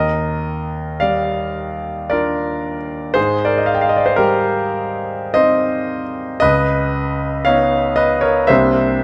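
Serene and hazy, this short passage of impressionist classical music unfolds in a slow, unhurried triple metre with a flexible rubato feel. A concert grand piano plays alone throughout the 9 seconds, ranging from deep bass notes up into the upper middle register. The harmony drifts through lush extended chords, moving from Ebmaj9 to Abmaj9 at 3.2 seconds, then to Dbsus2 and finally C9 just before the end. The instrument sounds clear, polished and intimate, placed up front and present, with the mechanical noise of its action audible beneath the notes. Close, detailed miking and a light reverb give the piano a sense of space while keeping every note distinct, as though this moment were lifted from a longer piece.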